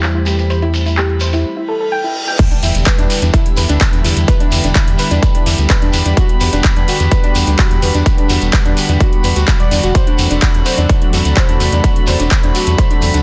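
Driving and emotional, this progressive house excerpt moves at 127 BPM in a straight 4/4 feel, in E minor. A lush, warbling unison pad holds sustained chords under a round analog bass, both breathing with sidechain pumping. A soft, gentle pluck plays arpeggios through lush chorus and delay, opening with a filter sweep before a reverse cymbal at 1.7 seconds leads into the drop at 2.4 seconds, where an impact lands and a punchy, overdriven electronic kick enters up front. The deep house kit adds crash, handclaps and metallic, filtered hi-hats in a small room, a grainy, distant shekere joins it, and a glassy texture of drifting overtones hovers calmly in the background. The chords move from Am7/E to Em7, Gmaj7/E and D7/E over a dense, heavily limited modern master with little reverb.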